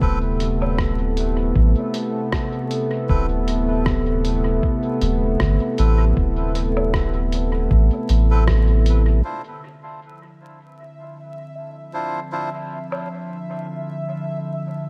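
A swung 78 BPM 4/4 groove of thumpy, muffled, pitched-down sampler kick and a lo-fi kit of hi-hat, rim click and woodblock drenched in dub echo opens this hazy, deep ambient dub fragment in D dorian, where a smooth, warbling vintage analog pad with chorus holds Amadd9/D over a round, soft sub bass and reedy, breathy melodica stabs echo through a crackling, echo-heavy mix; after the kick stops at 8.7 s and the bass at 9.2 s, the harmony turns to Dm9 as the pad's filter sweeps and a resonant, bubbling stepped-filter texture on E5 enters at 9.3 s.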